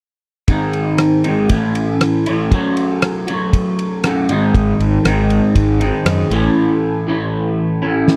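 A hypnotic, dark psychedelic rock excerpt at 119 BPM in G# phrygian dominant opens at 0.5 seconds with an up-front, slightly broken-up picked electric guitar riff coated in phaser and a damped 70s drum kit of tight kick, fat snare, rim click and ride with a rolled-off top, while a fuzzed, overdriven fingered bass joins only from 4.5 to 6.5 seconds over chords moving G#, A and F#m in a dry, close 1970s-style studio sound.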